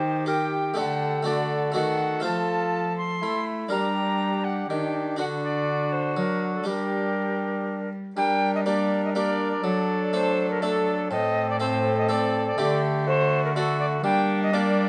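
A courtly, solemn renaissance-style consort dance in 3/4 at 122 BPM, set in G harmonic minor, opens with all five parts together: a pure, wooden alto recorder carrying the expressive melody with gentle vibrato, a mellow cor anglais on the second line, and a clear, soft-edged bassoon alongside a round, plucked harpsichord in accompaniment. Beneath them, a rich, close-miked cello with gut-string tone and a reedy colour holds the bass up front, while light reverb frames the ensemble. The music moves from its first section into a second at 8.2 seconds, and this excerpt of a longer piece comes to rest on G minor at 14.0 seconds.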